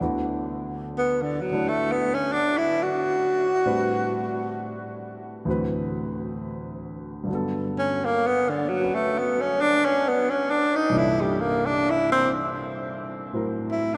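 Bathed in the long, wet reverb of a vast cathedral, this brief excerpt of a romantic jazz ballad moves at a slow 66 BPM with a lilting swing in D major. A warm concert grand piano, close and natural with deep bass and audible action noise, carries the accompaniment through chords such as D69, Gmaj9 and C13. At 1.0 seconds a breathy, clear tenor saxophone enters up front for an intimate solo, coloured by vibrato and scooped notes.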